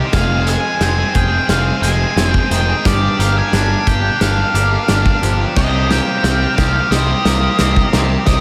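Post-rock in C minor at 89 BPM, this melancholic, cathartic fragment of a longer piece builds for its full 8.4 seconds over Fm7, Gm7 and Cm7, with a loose indie drum kit playing a fill throughout: punchy kick, medium-tuned snare and dark cymbals in a pumping room. An up-front fuzz picked electric bass anchors the low end, while a brilliant overdriven guitar riff and twangy, compressed background arpeggios, coloured by spring reverb, support a dark octave-fuzz lead melody. A very quiet glockenspiel struck with hard plastic mallets adds airy, bell-like arpeggios, and a lush hall reverb with slapback echo on the guitars gives the whole a big arena sound.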